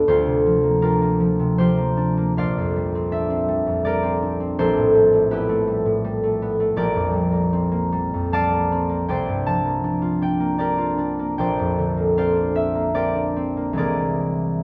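Dreamy and peaceful, this classical solo harp piece in 3/4 drifts with a rubato feel, its concert harp sounding warm, ringing and up front with thumb-plucked tones spanning Bb1 to A5, captured by close, detailed microphones in light reverb as lush extended chords, often returning to Bb69, unfold across this short excerpt cut from a longer piece.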